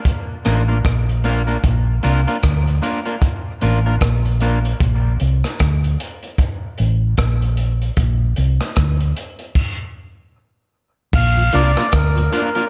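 A swung, laid-back dub reggae groove rides on a crunchy, gritty breakbeat kit with a tight kick and rolled-off cymbals, beside a round, hollow-body electric bass up front, while a twangy guitar at the edge of break-up drifts through spring reverb and dub echo, drops out at 4.6 s and later returns. After a stop, a reedy, breathy melodica with dub echo enters at 11.2 s, joined at 11.4 s by a mellow tonewheel organ with key click in the background. It is all set in a small room with dark, warm production as a filter sweep closes this excerpt cut from a longer piece.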